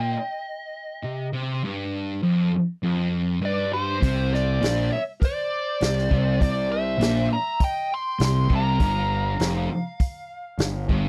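Driving and raunchy, this 100 BPM blues rock power trio and southern rock excerpt in straight 4/4 opens with a thick, double-tracked fuzz guitar riff under a dark, smooth lead guitar melody treated with wah, overdrive and slapback echo and a quieter bluesy distorted second guitar line, before a round, fuzzed picked bass and a vintage drum kit of punchy kick, snare and hi-hat join at 4.0 seconds, all captured in a dry, close 1970s-style studio sound over chords moving from Cm through Fsus2 and C7(no3) to Gm7.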